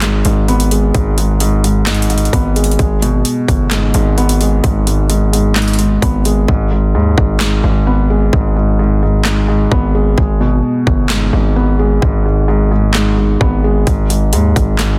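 A dark, melancholic trap excerpt opens with a felt-muted upright piano, a distorted 808-style bass and a trap drum kit all sounding together over a half-time feel, anchored on a single minor chord. The piano sits low and close, its soft, mellow tone dulled by a low-pass filter, with the audible noise of its action lending an intimate touch. Beneath it, the 808 is heavy and aggressive, a saturated sine with a noise layer, striking with a fast attack before decaying. The electronic kit brings a hard-clipped kick, a sharp snare, handclaps and metallic hi-hats, all roughened by overdrive and pushed up front. The hi-hats drop out from 6.5 to 13.9 seconds, thinning the groove while piano, bass, kick, snare and claps carry on. The mix is dry and dense, with a heavily limited modern master that keeps every part close and forceful.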